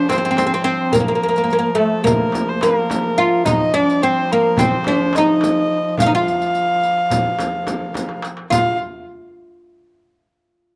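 Dry and open-air, this stately, passionate excerpt of Turkish makam ensemble music in 9/8 puts a woody, fretless oud melody up front against a nasal, bowed kamancheh second line with portamento and slapback echo, over a quiet, warm duduk drone with vibrato and scooped notes, while a crisp metal-shell darbuka, a deep, distant frame drum and a riq's bright jingles carry the rhythm to a drum fill at 8.0 seconds.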